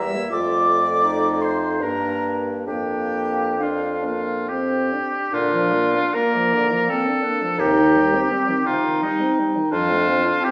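A serene, tender slow movement for wind quintet opens with all five players together: an airy, crisp-edged silver flute carries the melody from a distance in the background, while a warm oboe with light vibrato and a soft attack sits up front on the second line. Beneath them a mellow, roomy clarinet and a clear French horn fill in the accompaniment, and a bassoon with gentle vibrato anchors the bass from the front until 10.3 s. In Bb major and 3/4, the rubato tempo drifts between 64 and 87 BPM, new material arrives at 5.3 s, and a recital-hall reverb of 1.6 s surrounds this fragment of a longer work.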